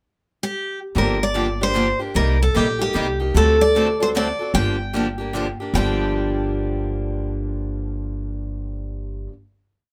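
A warm, concert-sounding steel-string guitar opens the piece alone with a pickup at 0.4 s, then carries a song-like, motif-based melody through a fiery 3/4 jazz manouche tune in G minor at 150 BPM, swinging over a Gm7, Cm7, D7, Gm7 progression. From about 0.9 s two boxy, bright parlour guitars join: one on fresh strings with audible finger squeak plays rhythm on every beat, short and accented on two and three, and the second adds another rhythm part, while a woody, thumpy upright bass with dark gut strings plays root and fifth lines with walk-ups. The lead guitar and bass sit up front in a light reverb, and the short piece closes on a final chord from 5.7 s.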